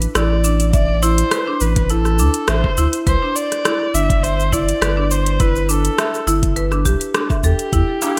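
Lightly reverberant and bright, with a 1980s digital production sheen, this hypnotic organic downtempo fragment rides a gentle sixteenth-note swing as woody marimba arpeggios with digital delay and a round, up-front sine sub bass with sidechain pumping open together. An electronic, produced afro-pop kit of cabasa, metallic hi-hat and rim click, with studio and gated reverb, starts alongside them and is joined at 0.7 seconds by a deep electronic kick. A single dark, bowed kamancheh carries the melody with vibrato, portamento and digital delay, while a crisp, distant metal-shell darbuka sounds only at 8.0 seconds in a large room.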